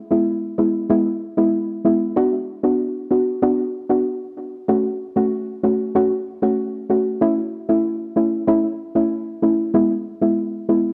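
Sultry and tough, this dancehall passage at 95 BPM in B minor features a soft, round, dark pluck playing solo and up front from 0.1 to 10.9 seconds, its fast-attack, decaying notes thickened by chorus and digital delay as the harmony moves through E, Bm, F#m and A back to E, all set in a moderate echo-chamber reverb and coloured by the warbling pitch drift of worn cassette tape.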